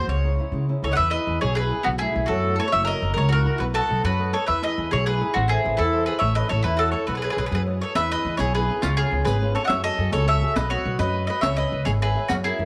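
A round, double-strung picked mandolin sings the passionate, romantic melody of this Italian folk serenade excerpt in E major at 138 BPM in 6/8, joined at 0.8 s by a second mandolin line, over dark fingerpicked flamenco guitar with audible finger squeak and an up-front woody pizzicato upright bass with transformer saturation, while a riq with bright jingles and soft hands enters in the background at 8.0 s, all set in light reverb.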